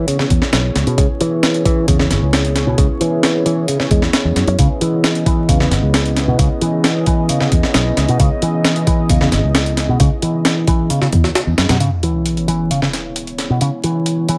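A moody, detuned sawtooth pad holds a C#m7 chord with chorus and sidechain pumping, opening this swaggering, energetic breakbeat piece at 133 BPM in C# minor alongside a punchy picked electric bass riff run through an envelope filter, tube saturation, 12-bit sampler grit and tape echo, over a bed of vinyl crackle. A gritty, compressed sampler-style breakbeat kit with a thumpy kick and high-tuned snare sits up front, while a round, foam-muted fingered electric bass holds down the low end until 11.8 seconds. There an electronic sub drop and an impact land as a filter sweep runs on the picked bass through to 14.4 seconds.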